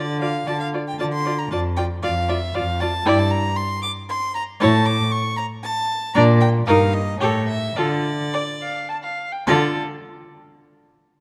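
Dramatic and restless, this quick classical-period movement for string quartet in triple time unfolds with a rubato feel, each single player bowing on gut strings in period style. A first violin with light vibrato sings the melody up front, a dark, nasal second violin sounds from a distance with its own line, a viola with a smooth top supplies the accompaniment, and a warm, reedy cello anchors the bass. Close, detailed microphones catch the playing within a moderate concert hall reverb, and the music breaks into a new section at 9.5 seconds just before this portion of the longer piece is cut off.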